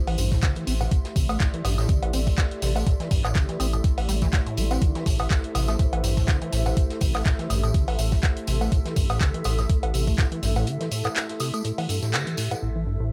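Acid house at 123 BPM in A minor, trippy and raw, with a swung 16th feel and an up-front, overdriven, thumpy electronic kick driving until 10.3 seconds, alongside a punchy analog drum machine of cowbell, handclaps, hi-hat and woodblock, a close, jingly tambourine and a very quiet, dark jazz kit of hi-hat and snare. A rubbery, resonant square-wave acid bass riff carries overdrive, digital delay and a filter sweep over a thick, saturated sine sub bass holding A1, with both pumping to the sidechain. A warbling, nostalgic lo-fi pad fades in on a sustained Am7 with chorus and reverb, while a blurred, evolving granular cloud pad sits mellow in the background, before a break at 10.7 seconds and a band accent at 12.1 seconds.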